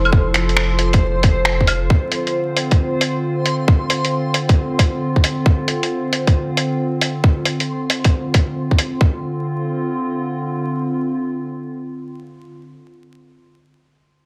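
Vinyl crackle and a moderate digital room ambience frame this nocturnal, ghostly piece of future garage, cut from a longer track and set at 135 BPM in 4/4 with a swung 16th-note feel in D minor, tuned slightly flat to A4 = 438 Hz. A warbling, nostalgic pad runs throughout the 12.9 seconds, its detuned, wave-folded chords softened by chorus and its own reverb and pumping against the sidechain as the harmony moves from F to Dm7 at 1.9 seconds. A deep, round dub sub bass holds F1 only in the opening moments, while a reversed, granular texture drifts dreamily around C5 until 9.0 seconds. An overdriven, tight electronic kick sits up front, re-recorded in a large room, alongside a muffled, pitched-down sampler-style kit of claves, finger snaps and hi-hat. Both drum parts drop out around 9 seconds, leaving the pad to carry the brief closing passage.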